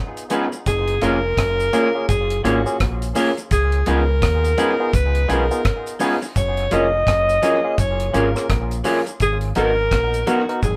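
A band playing together in one room fills this short cut from a longer lovers rock reggae piece, with a moderate studio reverb giving the sound a close, unforced glow. The mood is bittersweet and smooth, built on a relaxed swung groove that moves through C#7 and F#maj7 before settling on G#m9 at 9.2 seconds. A deep reggae drum kit with a dry, tight kick anchors the beat, its hi-hat, rim click and toms touched by tape echo, while a cabasa sits quietly in the background. Twangy, slightly broken-up stabs from an electric guitar through a small old amp and the barky, clean chords of a tine electric piano that also carries tape echo are joined at 0.7 seconds by a round, dark fingered dub bass that stands up front. From 0.7 seconds a breathy alto saxophone takes the melody in an intimate, whispered jazz style, its soft attack and vibrato sitting clearly at the front of the mix.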